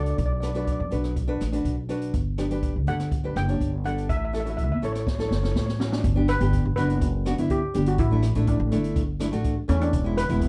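A festive, bouncy calypso fragment opens with a bright, shimmering lead steel pan played with hard rubber sticks, a fingerpicked nylon-string guitar and a pizzicato upright bass all sounding together from the first moment. The guitar is full-bodied with a deep classical tone and the occasional finger squeak, while the bass on steel strings has a woody, warm character, and both sit up front in the mix. An open jazz kit of hi-hat, kick, rim click and snare joins almost at once, heard at a distance in a roomy studio space with a boomy kick, a medium-tuned snare and a rolled-off top. The harmony moves from Bm through Gmaj7 to A, and a drum fill from 5.1 to 6.0 seconds leads into a new section where the chords pass through Gmaj7 and A7sus4 before landing on E7. The overall sound is dry, with little reverb around the metallic ring of the pan.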